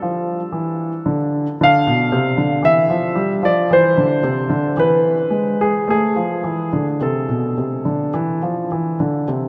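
Introspective and solemn, this short cut from a longer baroque-style suite movement in A minor sets a clear, polished grand piano up front in a slow, rubato 4/4 around 52-60 BPM, moving through Dm, Cadd9 and E to settle on Am at 5.9 seconds while a cathedral reverb with a 5.9-second decay hangs behind it.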